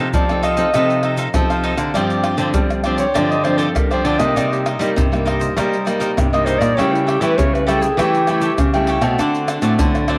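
A bright, crisp picked cavaquinho and two fingerpicked nylon-string guitars open this lively, yearning samba and choro piece in 4/4 with a straight feel. One guitar carries the bass line while the other fills in the accompaniment. Of the two, one is small and up front, and the other is full-bodied, with fresh strings, audible finger squeak and a classical touch. Almost at once, a close, dry percussion group of egg shaker, deep surdo, pandeiro and tamborim comes in up front, and a warm clarinet takes the solo. The clarinet plays jazz-style phrases with vibrato, soft attacks, scooped notes and a smooth top until 9.2 seconds, over changes that move from F7 and G7sus4 through Cm7 and A7/C# to D7. A wet spring reverb and small room ambience surround this short section cut from a longer piece.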